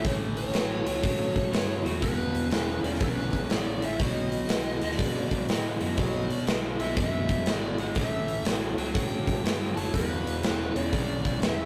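Blues rock in a southern rock vein, this driving, raunchy power-trio excerpt swings at 121 BPM in E major, tuned slightly flat to A4 = 437 Hz, and moves through A7, E5, B, an A7 with its third dropped and back to E5. Up front, a bright, double-tracked garage guitar picks an overdriven riff in its low register while a warm, smoothly overdriven lead guitar carries the melody above it, with a dark, round fingered bass underneath. A big acoustic rock kit with a punchy kick, medium-tuned snare and hi-hat sits forward in a moderately ambient room, and the rough rehearsal-room sound carries tube saturation.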